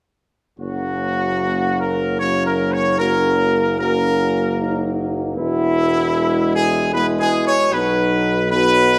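At 0.6 seconds a bright trumpet section enters up front with a regal fanfare melody marked by light vibrato, over mellow French horn and clear, distant trombone sustained chords and a warm, roomy solo tuba bass. This majestic classical ceremonial passage in F# mixolydian moves at 76 BPM in 3/4 with a straight feel, its harmony shifting from F# to E at 5.4 seconds and to B at 7.7 seconds. A wet recital hall reverb gives the brass a spacious, stately glow in this section cut from a longer piece.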